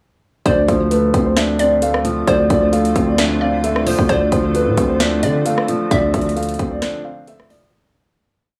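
A growling, buzzy 808-style bass anchors this dark, melancholic trap piece at 132 BPM in a half-time feel, its long sub-bass notes following the kick with pitch slides until 6.8 s, under an overdriven trap kit of hard-clipped kick, sharp snare and metallic hats with fast hi-hat rolls. Over a Dm7 chord in D minor, a dark, boxy concert grand piano loops the melody through tape echo, a felt-muted upright piano adds an intimate eighth-note arpeggio with audible action noise, and a hollow square pluck with chorus and tape echo sketches a sparse counter-melody in the background. A cloudy granular pad enters at 2.0 s with reverb-soaked sustained chords before the hook fades out from 5.9 s into a brief break, all captured as a dry, gritty hardware recording.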